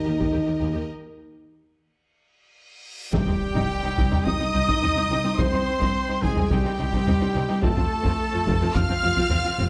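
A full string body opens this epic, heroic orchestral film cue at 107 BPM in 4/4, with a lush, vibrato-rich violin section carrying the melody over a second violin line, bowed violas, and a cello and double bass foundation, all laid against dark, distant French horn chords and the hard-stick thump of a taiko ensemble. A break from 0.9 s clears the harmony, and a drum fill and reverse cymbal build toward a huge, bright impact at 3.1 s, where the music settles into C minor. There an airy, hollow flute enters very quietly on a second line, a bright trombone section adds sustained chords in the background, and a solo trumpet punches out stabs with light vibrato. The harmony moves from C minor to F near the close of this short cut from a longer piece. A moderate recital hall reverb gives the ensemble a spacious, heroic sheen.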